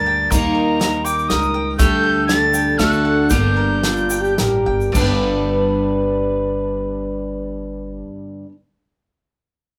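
A breathy, chiffy metal whistle carries the melody over bright, up-front picked steel-string guitar, woody double-strung mandolin arpeggios and dark pizzicato upright bass in this melancholic, intimate acoustic folk piece in 3/4 at 103-122 BPM, with a polished country drum kit with a punchy kick and a grainy egg shaker joining almost at once and dropping out by 5.2 s, the tempo slowing from 1.8 s, and a smooth classical-style French horn taking up a second line from 3.8 s, the band playing live together in a small, reverberant room.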